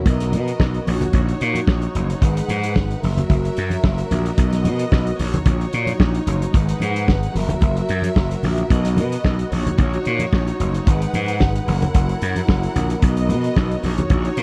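Disco with a celebratory, joyful mood, this 14-second excerpt is cut from a longer piece and moves in a straight 4/4 groove. A lush, bowed string section holds sustained chords with smooth vibrato, cycling through Bmaj7, D#m7/A#, G#m7 and F#7 from the opening moment. A gritty slap bass sits up front, bright, growly and punchy with an overdriven edge. The acoustic soul drum kit is dry and muffled, with a tight kick, a medium-tuned snare and hi-hat, its top rolled off and placed up front in the mix. Low-tuned, ringing congas sit in the background, and the whole track carries a dark, warm production in a small room ambience.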